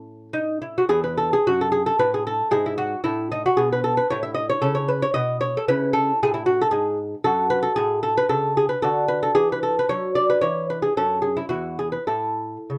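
Radiant and dance-like, this 12.8-second excerpt of a baroque-style classical dance in 3/4 at 112 BPM, taken with rubato, features a solo lute spanning E2 to E5, fingerpicked and delicate on gut double strings with some octave-doubled courses, sitting up front in a dry, close 1970s-style studio recording with light reverb, as it moves through A, Eadd11, E/G#, F#m and D before settling on A5 at 12.1 seconds.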